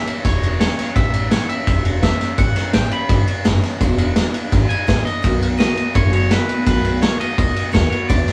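Rollicking and rowdy, this brief rockabilly excerpt at 168 BPM in a straight 4/4 has a bright, twangy electric guitar carrying the melody over a full-bodied jumbo acoustic guitar picking chords from A7 through E7 to B7 in the background, a thumpy, woody pizzicato upright bass with gut strings, and a gritty, saturated vintage drum kit with punchy kick, medium-tuned snare and dark ride cymbal up front, the whole band playing live in a moderate stone room.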